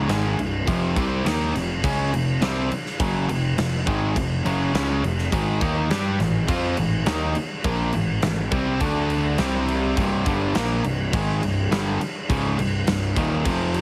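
An aggressive, driving hard rock excerpt in C minor at 103 BPM opens with a bright, up-front distorted electric guitar and a crunchy overdriven guitar set back in the mix, both riffing over a dark, round fuzz picked electric bass. At 0.1 seconds a big rock drum kit joins with a punchy kick, a pumping room, bright cymbals and a medium-tuned snare, all moving through chords from Cm to F5, A5, D5 and C5 under light reverb and a heavily compressed radio sound.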